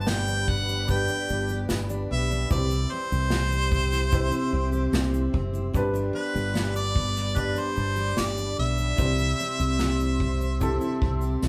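Heartfelt and sunny, this short acoustic pop excerpt in G major moves at an easy 74 BPM as a bright, up-front harmonica sings the melody with vibrato and scooped notes over a full-bodied picked jumbo acoustic guitar, a worn, slightly detuned upright piano in the background, a round, punchy fingered electric bass, an ethereal chorused FM pad, an unplugged drum kit played with bundle sticks, and a very quiet jingly tambourine, all captured as a band playing live in one room while the chords shift between G and C.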